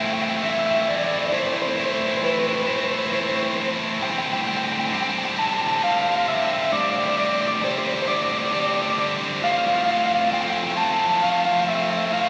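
A bright, double-tracked distorted guitar sits up front playing a tight picked riff from A2 to G4, while a dark, slightly broken-up electric guitar through a small old amp carries the picked melody between B4 and A5 with harmonic tremolo, both running the full 12.3 seconds of this cinematic, cathartic rock passage at 44 BPM in 6/8 and tuned to A4 = 442 Hz, moving from Am to Gsus4/A at 4.0 seconds and F/A at 9.4 seconds inside a wet cathedral reverb of a church or concert hall, cut from a longer piece.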